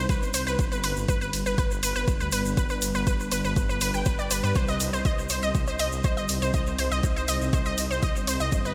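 A bright, up-front unison pluck leads this hypnotic, driving melodic techno excerpt, spinning arpeggios between B4 and G5 with detuned sawtooth layers, ring modulation, a filter sweep and a digital delay, all pumping against the sidechain. Beneath it, a moody ambient pad holds sustained chords with a slow attack, chorus and its own reverb, sitting dark in the background. A rumbling, saturated detuned saw bass anchors the low end from G1 to G2, and both the pad and the bass also pump with the sidechain. The beat is a steady 121 BPM in 4/4, built from a layered, overdriven kick, a tape-warm analog drum machine playing hi-hat and ride, and a grainy egg shaker tucked behind, all running from about 0.1 s. The harmony moves from Cm to G and back to Cm at 4.6 s in C harmonic minor, wrapped in a lush hall reverb and a bright 1980s-style digital production.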